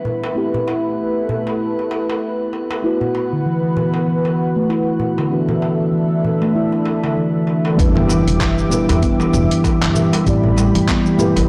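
Earthy and hypnotic, this short organic downtempo passage in E minor moves at 97 BPM in 4/4 with a swung sixteenth-note feel. From the start, muted, felt-like synth keys with a dark, intimate tone sit alongside a smooth analog pad, both treated with chorus and sidechain pumping, while a glassy texture of drifting overtones hovers calmly in the background until 7.8 seconds. A crisp, metal-shelled darbuka struck with hard hands keeps time, and at 2.8 seconds a round, ringing steel tongue drum played with soft rubber mallets comes up front with delayed arpeggios. At 7.8 seconds the groove thickens as a woody pizzicato upright bass, a gritty sampler-style kit of handclaps, hi-hat, shaker and toms, and a thumpy electronic kick arrive together with a distant electronic impact. The harmony moves through Am9, D6, Em7 and back to Am9, and the whole recording is blown-out and overdriven, bathed in a wet echo-chamber reverb.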